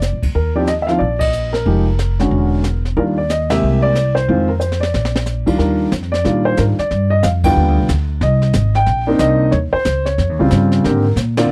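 A dry, close studio sound in a 1970s style frames this sophisticated, swinging jazz piano trio excerpt in Eb major at 183 BPM. An intimate, up-front upright piano carries the melody with audible action noise and a woody, natural tone, while a growly, thumpy pizzicato upright bass sits just as forward beneath it. Brushes on a kit with dark cymbals, a high-tuned snare and a boomy kick play further back, joining the whole band in shared accents and adding a drum fill from 4.6 to 5.3 seconds before the second section begins at 5.6 seconds and moves through rich chords such as Ebmaj9, Cm9 and Abmaj9#11.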